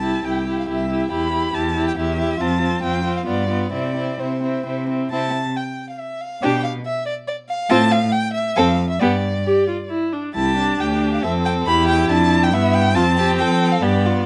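Spirited and graceful, this quick classical-period movement for string quartet unfolds in a rubato 3/4 at 138 BPM in C major, a passage cut from a longer piece. The first violin carries a dark, expressive melody up front with vibrato and portamento. The second violin plays an intimate sul tasto line close by, over a rich, focused viola accompaniment and a forward cello bass, in light reverb, as chords move through C, Em, F and G7 and a new section begins at 5.1 seconds.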